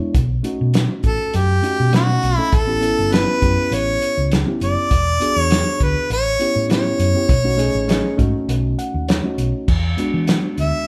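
A reedy, clean electric piano opens this laid-back, swaggering straight-eighth soul blues at 101 BPM, joined almost at once by a dark, round hollow-body bass and an acoustic drum kit with a fat snare, punchy kick and dark cymbals, all in a small, lightly reverberant room where the band plays live. At 1.1 seconds an up-front, close-miked harmonica takes the melody in a jazz style, with light vibrato and scooped notes, over ninth chords moving through B9, A9 and E9. After an electric piano fill, the harmonica steps into a solo at 9.7 seconds as this cut from a longer piece closes.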